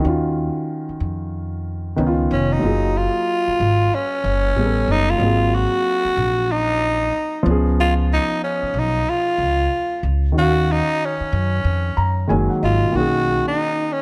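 A swung 4/4 groove at 93 BPM sets up this jazz-hop excerpt in F# major, its mood cool and warm, with a woody pizzicato upright bass sitting up front under a dark, mellow concert grand piano voicing lush extended chords like D#m9, F#maj9 and Bmaj13. At 2.3 seconds a growling tenor saxophone takes the melody, raspy and breathy with scooped notes and a slapback echo, while the piano adds a fill at 11.7 seconds before the bass drops out at 13.4 seconds. The small-room reverb is light and the production dark, giving the excerpt a warm, intimate feel.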